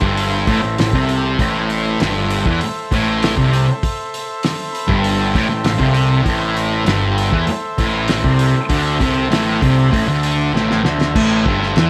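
Garage rock with a raw, menacing mood, this excerpt moves at 98 BPM in a straight 4/4 and stays on A minor throughout. A thick, double-tracked fuzz guitar sits up front, grinding out a low riff with warm fuzz distortion, while a picked electric bass adds a bright, growly overdriven edge beneath it. The cloth-damped drum kit sounds thuddy and muffled, with a fat snare, tight kick, dark cymbals and a gritty, saturated small-room character. Floating above in a higher register, a clean, reedy vintage combo organ holds sustained chords with light vibrato and breaks into fills at 4.4 and 9.9 seconds. A drum fill arrives at 10.5 seconds, and a touch of reverb gives the lo-fi mix some air.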